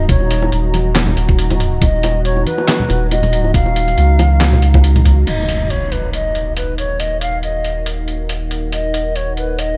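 A half-time deep dubstep groove with a light swing on the sixteenths drives this heavy, dark excerpt cut from a longer piece. A knocking, layered electronic kick, re-recorded in a small room, pairs with a compressed, pitched-down trip hop sampler-style kit of muffled medium-tuned snare, handclaps, hi-hat and crash cymbal, overdriven and set in studio reverb. Warm acoustic congas and bongos sit in the background through the opening drop, and with the kick they stop at 5.1 seconds, leaving the sampler kit to carry on. Underneath, a round, up-front sub bass holds a sustained low foundation while a moody, detuned sawtooth pad with a sub octave swells slowly into long, chorused chords bathed in its own reverb. Over the top, an airy, reedy ney with vibrato sings the melody through a dub echo. At 5.3 seconds an electronic impact lands as the harmony settles from a minor add-nine colour to a plain minor chord, all framed in a digital ambience.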